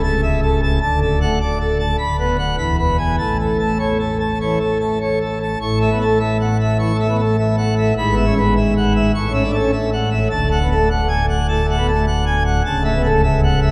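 Jubilant and majestic, this classical organ toccata moves at a steady 102 BPM in 4/4 with a straight feel, set in A major and tuned slightly low at A4 = 437 Hz. A solo pipe organ fills the whole passage on a full plenum with mixtures, its brilliant, romantic voicing placed up front and reaching from a deep C#1 to a gleaming C#6. The harmony begins on A/C# and passes through D, Bm/D and E before settling on A at 3.2 seconds. A second section opens at 5.6 seconds and returns through E/G#, A and D, arriving on A/C# near the close. A wet cathedral reverb with a long 4.2-second decay surrounds the instrument, giving this cut from a longer piece a vast, resonant grandeur.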